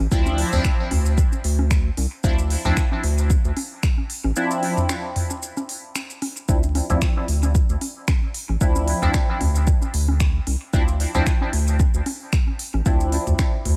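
A lightly swung sixteenth-note groove drives this nocturnal, hazy dub techno excerpt, cut from a longer piece. A deep, layered electronic kick sits up front with a touch of studio reverb, while a deep house kit adds finger snaps, smooth hi-hats and shaker. Overdriven analog-style electronic congas and toms pump against the kick and trail off into dub echo and reverb. Beneath them, a round, dark analog bass holds the low end, also pumping with the kick. Juicy, resonant polysynth stabs with filter sweeps, chorus and phaser ripple through dub echoes over a single sustained minor-ninth harmony. A break arrives between 4.4 and 6.5 seconds, and a prominent layer of vinyl crackle hangs over the whole mix.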